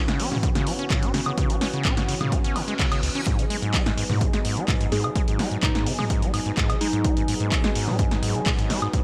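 This acid house excerpt runs at 127 BPM in a straight 4/4 in G# minor, with a punchy analog drum machine entering at 0.1 seconds and an up-front electronic kick joining at 0.4 seconds to drive the hypnotic groove. The drum machine brings handclaps, hi-hat, a punchy snare, toms and woodblock, with a short room around the snare, clap and hats. A squelchy, resonant sawtooth acid bass carries the riff from the start, its filter sweeping over fast-attack, decaying notes roughened by overdrive, vintage 12-bit sampler grit and delay, and it pumps against the kick. Alongside it, a smooth, detuned analog pad holds sustained chords with a slow attack, a moving notch, chorus and the same sidechain pumping, shifting from C#m7 to G#m7 at 3.3 seconds just as a reverse cymbal in the background finishes its brief rise. From 4.9 to 7.5 seconds a round, gentle, keys-like FM lead sits in the background with chorus, vibrato and delay, all under a light reverb.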